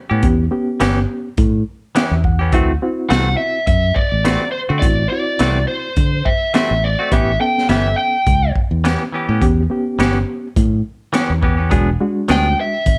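A straight-eighth groove at 104 BPM in 4/4 drives this rollicking, laid-back soul blues in A mixolydian, built on a crunchy, gritty breakbeat kit with a punchy kick and high-tuned snare, a round, up-front fingered bass, bright, twangy clean guitar stabs and a reedy, worn electric piano with fast tremolo that adds a brief fill early on, while an overdriven lead guitar with plate reverb carries the melody from 3.1 to 8.5 seconds and returns at 12.3 seconds over chords moving from A9 to D9 and E9.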